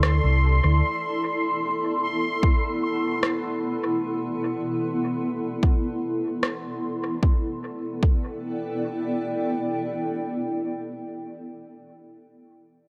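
Deep and meditative, this ambient dub excerpt moves at 75 BPM in 4/4 with a light swing on the sixteenths, settling in A minor around chords of D7(no3), Amadd9 and later Asus2. A granular cloud pad sits up front for the whole passage, its detuned sine voices blurred and slowly evolving through a moving notch, with slow attacks, long releases and its own reverb giving it a mellow, full-bodied haze. Beneath it, a round, punchy fingered electric bass speaks only briefly at the very start, while a tape-warm electronic rim click carries a dub echo until 6.6 seconds. High above, a bubbling, resonant sawtooth texture steps randomly through its filter, softened by chorus and reverb, and drops out at 7.2 seconds as the harmony shifts. An overdriven, layered electronic kick enters at 2.4 seconds, deep and forward in the mix, and the whole piece sits in a moderate echo-chamber reverb that lends it a spacious, drifting calm.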